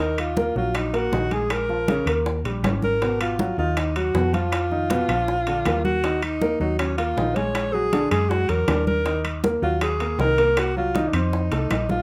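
An up-front alto saxophone with warm vibrato carries the melody over clear upright piano, a dark, round hollow-body electric bass, ringing metal-shell timbales, bright damped congas, saturated low-tuned bongos and woody claves in this driving, sultry Afro-Cuban jazz excerpt at 159 BPM in Eb minor, lightly reverberant and closing with a drum fill at 11.5 seconds.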